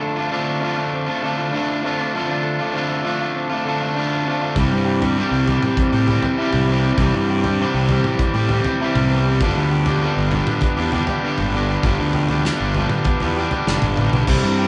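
Indie rock at 99 BPM in a straight 4/4, upbeat and carefree, cut from a longer piece. It opens with two guitars playing riffs together: a bright, compressed fuzz guitar sits up front, while an overdriven electric guitar with a rounder, warm tone stays in the background. At 4.6 seconds a fuzzy, overdriven fingered electric bass arrives alongside a loose indie drum kit with a medium-tuned snare, tight kick, toms and crash cymbal, its small-room sound pushed toward the mids. The chords move from Dm7 to C and then to G7 at 9.4 seconds. The whole band sounds as if it is playing live in one room, wrapped in a wet studio ambience with a dark top end.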